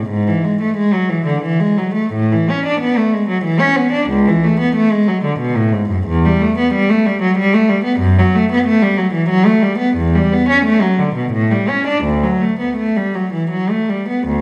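In an unhurried 3/4 with free rubato, hovering between 78 and 95 BPM, this serene, flowing baroque-style suite movement for unaccompanied cello is taken from a longer piece. A single bowed cello, rich and expressive with vibrato, soft attacks and portamento, sits up front and ranges from C#2 to D4, moving from A major into D major at 6.1 seconds. The recital hall's wet reverb adds a lingering bloom to the performance, tuned to A4 = 441 Hz.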